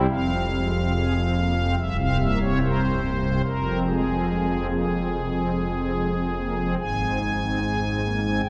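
The rhythm moves in a flexible rubato over a steady four-beat metre, giving this short, solemn classical fragment a grave, unhurried pulse. A pipe organ plays alone throughout the roughly 8.5 seconds, registered on soft string stops with a shimmering celeste and a romantic voicing that spans from C1 up to Ab5. The chorale-style harmony moves from F minor to C7, returns to F minor at 3.4 seconds, and reaches A-flat major at 6.8 seconds. The organ is placed up front in the mix, yet the listener seems to hear it from further back in a cathedral, with a reverb tail of about 5.1 seconds. Cut from a longer piece, the passage feels like a glimpse into a larger work.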